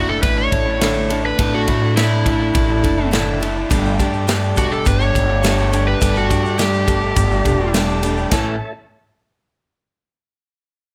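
Lightly reverberant and polished, this nostalgic, jangly folk rock and heartland rock excerpt is led by an up-front, dark, overdriven slide guitar solo played with fingerpicks, over a bright picked acoustic guitar in the background, a slightly broken-up, lo-fi electric guitar riff, a very quiet, smooth tonewheel organ with rotary-speaker vibrato and key click, growly, woody pizzicato upright bass, and an airy country drum kit with a punchy kick, all moving from Asus4 to Gsus2 as a grainy tube shaker joins at 3.7 seconds.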